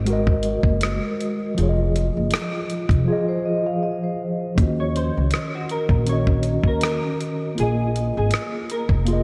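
This short lo-fi hip hop excerpt opens with a mellow tine electric piano, its clean tone heard through built-in speakers and dulled by cassette tape and a low-pass filter, alongside a woody pizzicato upright bass, with a dusty, sampler-style drum kit joining at 0.1 seconds on hi-hat, rim click and a thumpy kick. The groove sits at 80 BPM in 4/4 with a light 16th-note swing in Eb dorian, moving through Ab9 and Fm7 before settling on Ebm7 and Bb7sus4, for a hazy, nostalgic mood. The gritty, compressed drums drop out at 3.1 seconds as a soft-mallet vibraphone rings briefly, metallic with a slow motor vibrato, filtered and trailed by analog delay. At 4.8 seconds a dark, clean hollow-body jazz guitar takes the picked melody, colored by analog chorus, a low-pass filter and delay. The whole mix is soaked in a lush hall reverb that gives it a dreamy quality.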